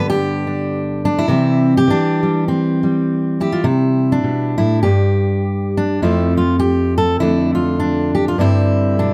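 A fingerpicked steel-string dreadnought guitar plays alone from the first moment, bright and full-bodied, sitting up front in a touch of light reverb. This short folk passage, cut from a longer piece, has a peaceful, pastoral mood and an easy swung lilt in 4/4. The chords move from G to C, and then a second section beginning at 3.6 seconds passes through Em7/G, F and Dm/F before resting on Gsus4 at 8.4 seconds.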